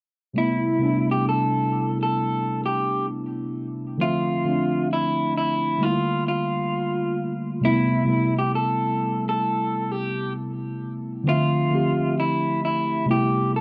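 Muted, felt-like synth keys open this slow, melancholic hip hop fragment at 0.3 s, laying down dark, warbling chords with a gentle chorus and a cassette-tape haze. An electric guitar through a small old amp joins at 0.4 s, carrying a melody between E4 and A4 in a slightly broken-up, compressed tone. At 66 BPM in 4/4 with a 62% swing on the sixteenths, the groove feels unhurried and nostalgic. The harmony in A minor moves from Am9 to Dm9 at 4.0 s, then through Gm9 before settling back on Am9, with both parts placed up front. A moderate small-room reverb and an overall cassette character give this piece, cut from a longer track, its intimate, lo-fi feel.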